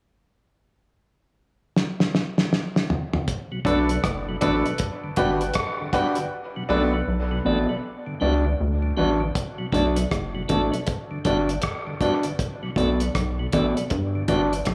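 Steeped in spring reverb and small-room ambience, this heavy, deep dub reggae excerpt opens with a fill on a cloth-damped, thuddy drum kit with a fat snare at 1.8 s. A piping tonewheel organ with key click arrives at 3.5 s, and around 3.7 s a rubbery, hollow square-wave bass, a mellow, clean electric guitar and brilliant grand piano stabs settle in, the guitar and piano both trailing dub echo, over a swung groove alternating Bm7 and Gmaj7, the piano dropping away at 6.9 s.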